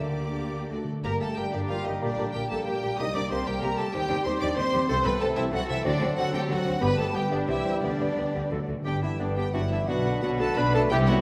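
In a quick triple metre of 170-191 BPM with a flexible, rubato feel, this cheerful, spirited romantic movement for symphony orchestra is cut from a longer piece. It starts in G minor and brightens to G major at 4.9 seconds. A clear, lush studio violin section carries the melody with vibrato. Around it, a pure, very quiet flute group, a clear clarinet in the background and a warm, bowed second violin section weave secondary lines. A dark, vintage-toned bassoon and an expressive viola section with soft attacks and portamento fill the accompaniment, over a rich cello section and a focused double bass section anchoring the bass. A dark French horn section holds hushed chords, a thumb-plucked concert harp rings out arpeggios, and round, soft-mallet timpani sound at the opening and again from 5.9 seconds. A distant, roomy trombone section and mellow trumpet stabs join at 1.0 second, all bathed in the reverb of a scoring stage.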